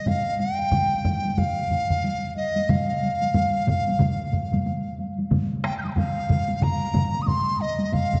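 A dark, reverberant concert-hall sound frames this brief cut from a longer Japanese traditional taiko piece, driving and ceremonial at 92 BPM in 4/4 with a swung sixteenth-note feel in F suspended pentatonic. Up front, an airy, buzzing bamboo dizi carries the melody within a range of Eb5 to G6 with soft attacks and vibrato across the full 8.2 seconds. Behind it sit three taiko ensembles: one struck with heavy sticks in a small room, a second with heavy sticks heard close and dry, and a third played with hard sticks in a small room further in the background.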